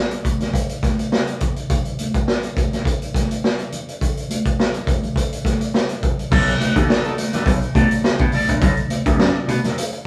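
Gritty and funky, this straight-feel groove opens with a raw garage drum kit up front: a punchy kick, a medium-tuned snare, hi-hat and crash, all saturated and mid-forward with a rolled-off top and small-room character. High-tuned congas with a thick-skinned, warm tone sit further back, and the two play unaccompanied over an open, chordless passage. At 6.3 seconds the harmony lands on a B7#9 chord as an overdriven slap bass enters, bright, direct and amped, alongside a dark, clean, picked electric guitar run through an envelope filter and phaser, tucked into the background. A distant, roomy horn section with light vibrato adds a brief pop-style ensemble line from 6.6 to 7.8 seconds. The band sounds as if playing live together in one room, wrapped in a moderate large-studio reverb, and the clip is cut from a longer piece.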